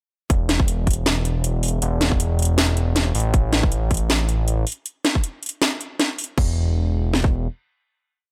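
A short, dreamy and bittersweet future bass piece opens at 0.3 s directly on the drop, where a thick, detuned sawtooth-and-square analog bass with a nasal, saturated filter pluck pumps under sidechain, following the chord rhythm in the low register. Two overdriven trap kits run at a half-time 158 BPM with a light 16th-note swing: one carries a hard-clipped kick and sharp snare, while the other adds metallic hi-hat rolls, open hats and a crash. The dry, up-front mix, tuned to A4 = 441 Hz, lets the drop give way at 6.4 s to a final bass note that rings until 7.5 s.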